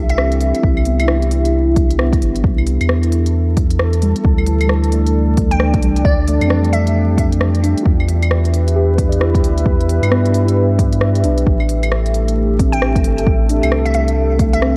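A round, sine-based sub bass sits up front in this melancholic, nocturnal future garage excerpt, pumping against an overdriven electronic kick that enters at 0.6 seconds. Around them, a deep, dark ambient pad holds sustained chords with chorus, its own reverb and gritty 12-bit sampler texture. Muted, felt-like synth keys add soft, intimate accompaniment through chorus and delay, and both the pad and keys also pump with the sidechain. An organic-sounding electronic kit of claves, smooth hi-hat and rim click, also overdriven, plays within the track's swung 16th-note feel. A glassy, crystalline wavetable pluck surfaces in brief phrases, returning at 5.5 and 12.7 seconds with a diffuse ambient delay and sampler grit. The chords move from Am7 through Dm and Em back to Am7, in a dreamy mix soaked in lush hall reverb and flecked with vinyl crackle.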